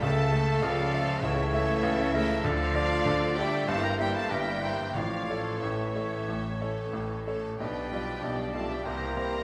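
Classical and rubato at 89-100 BPM in 4/4, this passionate, tragic fragment of a longer piece sets an intimate, up-front baby grand piano, its action noise audible, alongside a lush, distant violin section carrying the melody over chords that move from A/C# through Dm and Edim/G to G7/B and C. Airy silver flute, oboe, warm clarinet and a focused, close second violin section weave background lines, while a very quiet viola section, soft French horn chords, and cello and double bass sections, the basses sliding with expressive portamento, fill out the ensemble. Hard-mallet timpani sound briefly from 4.9 to 5.9 s, all within a moderate scoring-stage reverb.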